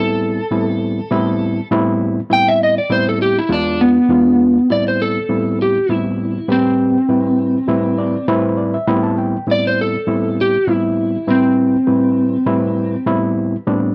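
A brooding, soulful minor-key blues opens with an electric slide guitar soloing up front over an overdriven reed electric piano, both heard from the very start. At 100 BPM in 4/4 with a light swing, the slide guitar carries the melody with a slightly broken-up tone, while the electric piano plays a reedy, gritty accompaniment through a combo amp. The harmony moves from Am9 to E7b9 and back to Am9, and the electric piano steps forward with a short fill at 7.7 seconds. The slide guitar drops out at 13.0 seconds, leaving the electric piano to close this brief section cut from a longer piece. The sound is dry and close, like a 1970s studio recording, with a touch of digital ambience.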